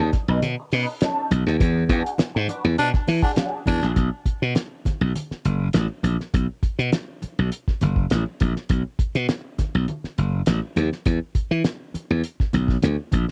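Strutting and energetic, this short funk cut is driven by a glassy, growly slap bass sitting up front alongside a cloth-damped, thuddy drum kit with a fat snare and tight kick, while very quiet congas with soft hands fill in beneath. An electric guitar at the edge of break-up, colored by wah and chorus, comps only until 3.9 seconds, and a raspy, gritty baritone saxophone adds a brief bright line from 2.8 seconds during a band accent over E9. After 4.0 seconds the groove settles onto B7(no3) and E5, and the whole piece carries the character of a home cassette recording in a studio reverb.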